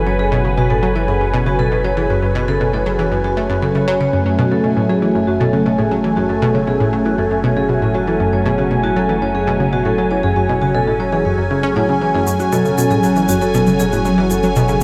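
A swirling, phased analog pad holds an F#madd9 chord over a deep sine sub bass, opening this hypnotic, cosmic stretch of sequencer-driven space music in F# minor at 118 BPM, with the sub bass fading in from 4.1 seconds. A bright, wave-folded analog pluck riff with chorus and tape echo sits up front, entering together with metallic, ringing vibraphone arpeggios through a low-pass filter and tape echo, and overdriven electronic shaker and toms enter at 12.3 seconds. A huge, wet reverb with a 7.9-second tail places the music in a vast, echoing space.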